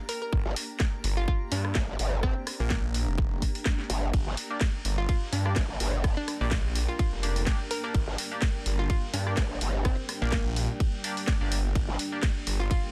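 A blurred, evolving granular cloud pad opens this swaggering, gritty bass house excerpt, quickly joined by a hollow, bouncy square-wave pluck with chorus and digital delay, a swung garage kit of cracking snare, hi-hat, ride and rim click, and a tight, up-front electronic kick. Underneath, a swirling, saturated phased saw bass and an aggressive, wobbling growl bass both pump with sidechain compression, while a nasal, band-passed chord stab with delay enters at 4.5 seconds and a deep, moody, warbling ambient pad settles into the background at 5.9 seconds. The mix is dry, dense and heavily limited, resting on a single G minor chord throughout.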